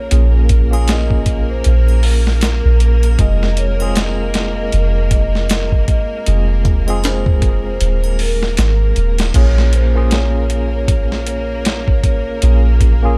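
Brooding and cinematic, this trip hop excerpt moves at 78 BPM in 4/4 with a swung sixteenth feel in Bb minor, its harmony shifting from Bbm7 to Fm at 3.2 seconds and returning to Bbm7 at 9.3 seconds. A mellow vibraphone played with soft mallets carries the melody, its metallic, ringing tone sitting mid-forward. Beneath it, a clean tine electric piano through a combo amp plays accompaniment with tremolo and tape echo, while a bowed violin section holds smooth, even chords with vibrato, roughened by vintage 12-bit sampler grit. Up front, a deep, round 808-style bass anchors the low end alongside a compressed, overdriven sampler-style drum kit with a thumpy kick, medium-tuned snare, hi-hat and crash, and the kick drops out between 7.8 and 9.3 seconds. Triangle and tube shaker add band-limited, vintage texture in the background, all framed by studio ambience.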